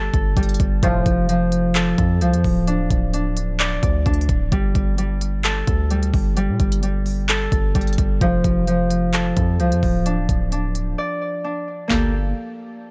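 A fingerpicked Celtic harp leads this hard-hitting, eerie trap excerpt, its ringing acoustic arpeggios sitting up front with a digital delay as they move over Gsus2 and F chords before closing on Gmadd9. Beneath it, a distorted 808-style bass rumbles in the low register, heavy and saturated, with a sine body, a noise layer and decaying notes that give it an aggressive edge. The trap drum kit plays a half-time feel at 130 BPM in 4/4, with a knocking kick, sharp snare, crisp hats, handclaps and toms, all overdriven and re-recorded in a small room for an up-front punch. A resonant sweep polysynth adds a brief, juicy stab at 0.8 seconds, its detuned square and sawtooth tones warbling with chorus and a filter sweep in the background. A break arrives at 11.0 seconds, and the whole piece is tuned slightly low to A4 = 438 Hz and set in a digital ambience.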